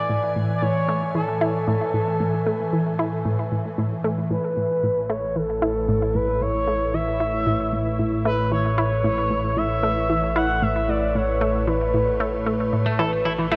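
Cosmic and expansive, this excerpt of ambient, sequencer-driven space music moves at 114 BPM in a straight 4/4, centred on A major and drifting from an A5 chord to Aadd9 at 4.3 seconds. An expressive synth lead carries the melody from the start, its smooth, soft-attack sawtooth-and-triangle tone shaded with vibrato, chorus and delay. Beneath it, an evolving wavetable pad sustains morphing, detuned chords with a slow attack and long release, bright and up front, while an analog pluck repeats a riff with a round, nasal, wave-folded bite and short decay through chorus and delay. At 5.3 seconds an analog drone settles onto a low A1, its pulse-width-modulated sawtooth sound mellow and slowly shifting. A clean, picked semi-hollow electric guitar appears only at 12.9 seconds with brief, compressed arpeggios touched by delay, all of it wrapped in a huge, wet ambient reverb with a 7.5-second tail.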